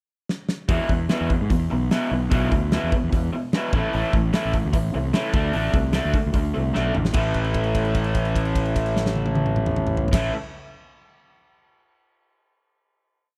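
Classic rock at 149 BPM, brooding and driving: a big, punchy drum kit with a fat snare opens with a fill at 0.3 seconds, then a bright, double-tracked garage guitar with overdrive and spring reverb chugs palm-muted eighth notes over a round, fuzzy fingered bass riff through E5, A5 and D5 before a second fill leads into a held A5 chord from 7.1 seconds, all captured in a dry, close 1970s-style studio sound.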